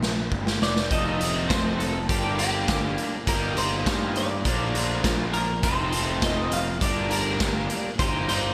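Moody and bittersweet, this short indie rock excerpt moves with a straight feel in 4/4 over a cycle of Bb, F7, Gm and Eb6/G chords. A raw garage drum kit opens with a fill in the first 0.9 seconds: punchy kick, medium-tuned snare and hi-hat sound gritty and saturated in a pumping stone room, with gated reverb and a rolled-off top, sitting up front. A growly fuzz bass with overdrive underpins it from the start, and a bright, clean, compressed twelve-string electric guitar carries the melody from 0.6 seconds, coloured by subtle chorus and digital delay. At 0.9 seconds two overdriven electric guitars join with riffs in the background, one crunchy with analog chorus, the other compressed with lush chorus and digital delay. A moderate hall reverb and a 1980s-style digital production frame the sound.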